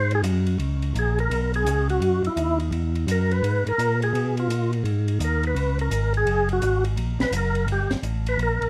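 The recording has a dark, warm production with light reverb and a faint mains hum, and it is cut from a longer piece. It is a swinging, soulful soul jazz organ trio at 169 BPM in 4/4, with a 64% swing on the eighth notes. The melody comes from a fat, percussive tonewheel organ played up front, lightly overdriven, with second-harmonic percussion, chorus vibrato and a slow rotary speaker. It sits over a full tonewheel organ bass line that is also lightly overdriven, with vibrato, audible key click and a stationary speaker. A compact cocktail kit enters at 0.1 s, dry and acoustic, sitting low in the mix with dark hi-hat and ride cymbals and a high-tuned snare. From 0.6 s an organ solo carries the music over changes that move from Ab7 through Db5, Ebm and Abm69 to Gb and finally Gmadd9.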